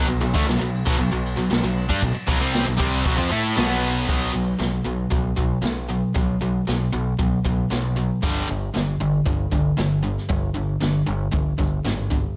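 Heavy and driving, this hard rock excerpt moves at 116 BPM in a straight 4/4 in B minor, cut from a longer piece. Two overdriven guitars carry the riff across the whole passage: a bright, picked distorted electric guitar sits up front, while a cranked stack guitar plays in the background, both spanning G2 to A4. A third distorted guitar, double-tracked, compressed and very quiet, adds to the riff only until 4.1 seconds, when the harmony moves from Bm to B5 and later to G5 at 8.2 seconds. Underneath, a growling picked electric bass, overdriven and punchy with a direct and amped sound, holds the low end from G1 to A2. A jazz brush drum kit, entering at 0.2 seconds, brings an unexpected acoustic texture to the heaviness, with dark cymbals, a medium-tuned snare and a boomy kick heard through a small, distant, roomy space, yet placed up front. Light reverb gives the whole a touch of air.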